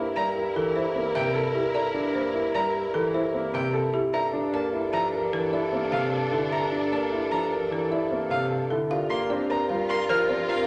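A woody, hard-mallet folk marimba carries the melody from the start of this hypnotic, meditative minimalist pattern piece in 6/4. It is joined at once by a very quiet clarinet second line, an intimate grand piano accompaniment with audible action noise, a focused studio string section holding sustained chords, a dark, worn baby grand playing arpeggios and a mellow solo bassoon holding G2 in the bass. A smooth, bowed single violin adds high arpeggios from 0.2 s, and the harmony moves from C13/G to Bbmaj9/G before reaching Gm7 at 8.9 s, all set in a wet recital hall reverb with the rustic marimba kept in the background of this passage cut from a longer work.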